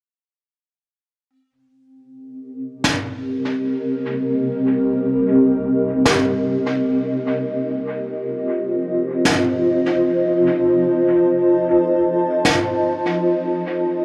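Ambient dub in free time and C dorian, this hazy, deep excerpt drifts from Cm7 to F7 at 7.7 seconds beneath a huge, dark ambient reverb. A cloudy, blurred granular pad enters at 2.6 seconds with detuned, full-bodied sustained chords between C4 and A5, slow to bloom and mellow under a filter sweep and its own reverb. Just after, a high-tuned acoustic snare played with brushes sits up front, roomy and rolled-off on top, its hits trailing dub echo until it stops at 12.6 seconds.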